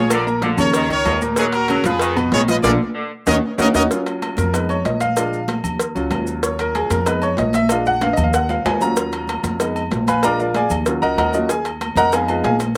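Salsa at 190 BPM in Eb minor, passionate and fiery, opening with a brilliant, punchy trumpet section carrying the melody over an edgy, vintage saxophone section with slapback echo until about 3.8 seconds, while a drum fill and band accent from 2.6 seconds hand off to a grand piano solo from 3.9 seconds. The bright baby grand, worn and intimate with audible action noise, long sustain and slapback echo, sits up front throughout, while a woody pizzicato upright bass anchors the low end. Ringing agogo bells and timbales, high-tuned congas in the background, a round low-tuned cowbell and grainy maracas drive the percussion, all in a dry, roomless outdoor sound.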